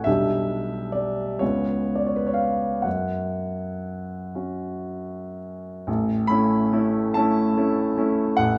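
Yearning and melancholic, this brief cut from a longer romantic nocturne for solo piano drifts in a slow, rubato 12/8 at roughly 37-50 BPM, the brilliant, open grand piano sitting up front with long sustain across a span from A1 to B5, moving through G/B, C#7 and F#5 before a new section settles on A at 5.9 seconds, all bathed in the wet reverb of a recital hall.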